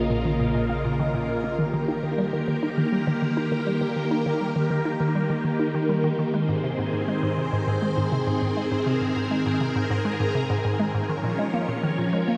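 A dreamy, reverb-soaked wash opens this short excerpt from a longer piece of ambient, sequencer-driven space music, moving at 101 BPM in a straight 4/4 with a cosmic, hypnotic mood. Up front, a bright, swirling string machine holds sustained chords from start to finish, its vintage sawtooth tone thickened by ensemble chorus, phaser and shimmer reverb. Beneath it, a hollow, nasal square-wave pluck carries the riff with a bouncy, detuned edge, doubled by chorus and echoed through analog delay. A mellow, evolving analog drone sounds the bass only until 1.6 s, while a very quiet, tempo-synced gated texture pulses high above the others throughout. The harmony moves from Bbm to Eb, then Ab, and returns to Bbm at 11.1 s, all suspended in a huge, lingering reverb.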